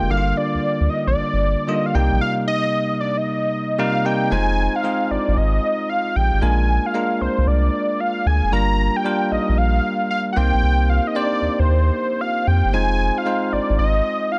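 New jack swing R&B at 114 BPM in F dorian, punchy and slick, with a swung sixteenth feel, where a thick, detuned sawtooth unison lead with vibrato carries the melody over bell-like tine electric piano accompaniment and a round, deep analog bass that sits up front until 14.0 seconds, all in light reverb across this cut from a longer piece as the chords move from Gm7 and Cm7 to Fm7 and Bb7.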